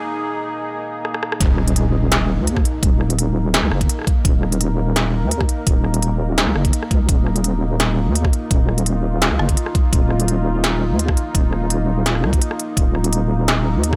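A deep, moody sawtooth pad with chorus and sidechain pumping opens this heavy, tense half-time drum and bass piece at 169 BPM, an industrial kit of clanging snare, rim click and crisp high-passed hats joins at 1.0 s with a short fill, and at 1.4 s the drop lands with a background impact, an overdriven, knocking electronic kick and a dark, detuned square-wave wobble bass with tube saturation sitting up front in a dry mix.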